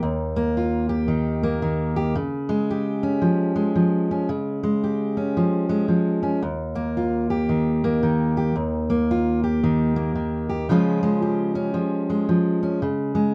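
A fingerpicked steel-string dreadnought guitar plays alone and up front, its dark, full-bodied tone marked by finger squeak as it moves between Eb and Db chords across a range from Eb2 to G4. The folk piece has a hopeful, nostalgic mood and a swung feel, set in a moderate small-room ambience. This 13.3-second passage is cut from a longer piece.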